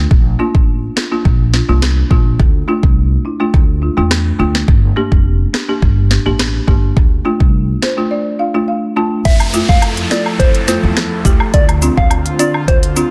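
This dancehall excerpt moves at 105 BPM in a straight 4/4 feel in D minor, with a tough, hypnotic mood. A produced afro-pop drum kit sits up front with a deep kick, sharp snare, smooth hi-hats and rim clicks, the snare softly clipped. Beneath it a woody, dark, thumpy upright bass plays pizzicato in a low register, while a dry, rustic marimba with medium hard mallets pumps with sidechain compression and carries the chords from Bb through Dm and Gm. After a marimba fill and a short break, the music shifts at 9.3 seconds to Fmaj7 and Dm7 as several parts arrive together. A round, keys-like FM synth lead with a warbling vintage tone, chorus and tape echo takes the melody. An airy, breathy pad with chorus and sidechain pumping sustains the chords, while woodblock, cabasa, egg shaker and group handclaps add small-room percussion over an electronic downlifter, all within a dense, heavily limited modern master.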